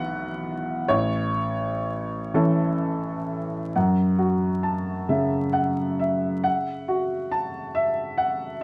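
A lone upright piano opens this short fragment of neoclassical minimalist music, its tone clear and woody as it sits up front in the mix. The mood is intimate and melancholic, set in F# minor and tuned slightly sharp to A4 = 441 Hz. The pulse moves slowly in 6/8 at roughly 41 to 47 beats per minute, counted in dotted quarters, and the playing is rubato. The piano spans a range from A1 to A5. The harmony begins on an Esus2 over B, moves to A, and at 3.7 seconds a second section settles onto F#m7. A wet studio reverb lends the piano's open tone a sense of space, and a thin layer of vinyl crackle adds a worn texture until the fragment ends at 8.6 seconds.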